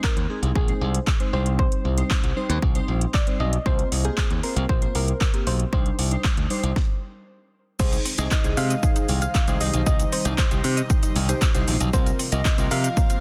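Energetic and confident, this dance-pop excerpt in C minor drives along at 116 BPM over a punchy, tape-warm house drum kit with cracking snare, metallic hats, claps and shaker, while a bright picked electric bass pumps up front beneath glassy digital keys that pulse with the same sidechain breathing. A dark, rounded pluck with chorus and digital delay carries the melody over chords moving from Ab through Cm and Bbsus2/C, and a brief stop at 6.8 seconds sets up the second section. From 7.8 seconds a very quiet woody mallet-like synth pluck adds arpeggios, and at 8.1 seconds an airy, breathy pad with phaser settles into the background, all within a dry, dense, heavily limited mix.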